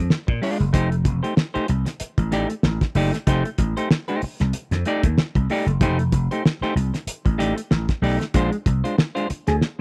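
A swung 16th-note funk groove at 95 BPM in 4/4 struts along in F mixolydian, driven by a cloth-damped, thuddy drum kit with a fat snare, tight kick and muffled, gritty character, beneath a bright, growly vintage slap bass and a dark, clean semi-hollow electric guitar moving between Bb9 and F9 chords. A band accent lands at 8.3 seconds on a rootless Bb9, a mellow trombone slips in with a brief vibrato note at 9.5 seconds, and a drum fill arrives at 9.6 seconds. The dry, close 1970s-style studio sound sits in a small room, keeping the parts up front.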